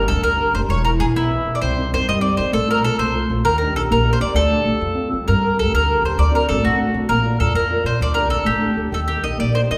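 Set in a reverberant church or concert hall, this recording carries a long, wet recital-hall tail that lingers around every note. It is a short cut from a longer Italian folk serenade in G minor, moving at 131 BPM in 6/8 with a straight feel, and its mood is passionate and romantic. The mandolin carries the melody up front, its picked double strings sounding bright and woody across the whole 9.8 seconds. Beneath it, a small, dark nylon-string guitar provides thumb-plucked accompaniment and adds a brief fill from 4.8 to 5.3 seconds. An upright bass anchors the harmony with pizzicato gut strings that sound warm and thumpy. The chords move through minor and major colours such as Cm7, Ebmaj7, Dsus4 and D7 before ending on Eb.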